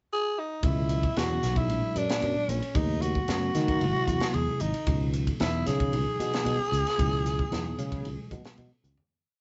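Electric jazz fusion at 113 BPM in 4/4 with a straight feel, this short, complete piece in C# minor has a slick, nocturnal mood. A growling tenor saxophone opens alone with a brief pickup, then leads with raspy, vibrato-laden call phrases built on short motifs, its scooped notes heard close and up front. A bell-like tine electric piano sits in the background with clean, syncopated chord stabs in drop-2 voicings, while a punchy, amped fretless bass plays a syncopated riff and a tight funk kit drives a fusion ride groove with a high-tuned snare and a tight kick. Very quiet, damped congas with a thick-skinned tone join at 4.9 s. The harmony moves from C#m11 through A#aug7, D#m7b5 and G#7b13 before returning to C#m11, all in a small, moderately reverberant room with a top end that stops below 7.9 kHz. A fade-out begins at 7.0 s, and a drum fill at 8.8 s closes the piece.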